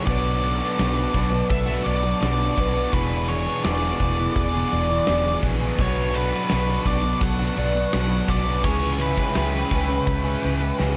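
A hazy, brooding shoegaze and dream pop passage in B minor at 84 BPM opens with a dark octave-fuzz lead guitar carrying the melody through distortion and slapback echo, over a swirling, nasal phased analog pad, a shimmering, boxy twelve-string acoustic picking arpeggios with audible finger squeak, and a background wall of three riffing guitars: a biting overdriven one treated with reverse reverb, a double-tracked overdriven one with spring reverb, and a thick, chorused fuzz guitar. From 0.1 seconds a round, foam-muted vintage bass sits up front beside a huge arena drum kit with a punchy kick, fat snare and bright cymbals, while a very quiet, jingly tambourine joins at 0.3 seconds. The chords move from Bm9 to E13 and back before settling on C#m7b5, and a drum fill lands at 10.8 seconds in this light, small-room mix.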